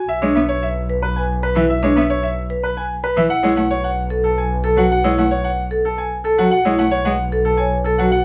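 Meditative and hypnotic, this short excerpt of minimalist classical pattern music moves at 112 BPM in a straight 3/4, tuned to A4 = 439 Hz. A bright concert grand piano carries the melody between A4 and G#5, sitting up front with a brilliant, open tone and long sustain. Alongside it, a vibraphone played with medium hard mallets spins arpeggios from D4 to C#5, its metallic, ringing sound colored by a medium motor vibrato. A single bowed cello supplies smooth, even accompaniment between E3 and B3 with a rich vibrato, while a lone bowed double bass holds B1 from a distance, expressive and warm with vibrato and portamento. The harmony shifts from E5/B to A/B at 3.3 seconds over that steady bass, all set in a light reverb across the roughly 8-second passage.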